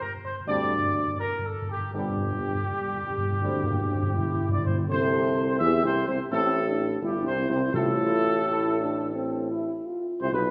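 Classical brass fanfare, regal and triumphant, where a dark, up-front trumpet section carries the melody over sustained chords from distant horns, smooth-topped trombones and a present tuba bass, while calf-headed timpani struck with medium mallets play a fill until 4.9 s, all set in a wet concert hall reverb in this passage cut from a longer piece.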